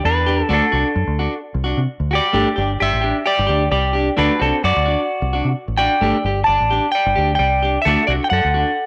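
Sunny and warm, this highlife guitar band excerpt moves at 131 BPM in G major with a light sixteenth-note swing, as a clean, picked electric guitar carries the up-front melody with a cassette-tape tint, a second clean electric guitar picks accompaniment from 0.3 seconds over D and Gsus2 chords, and a deep dub fingered electric bass sits round, punchy and foam-muted beneath, all in a homespun cassette recording bathed in moderate spring reverb.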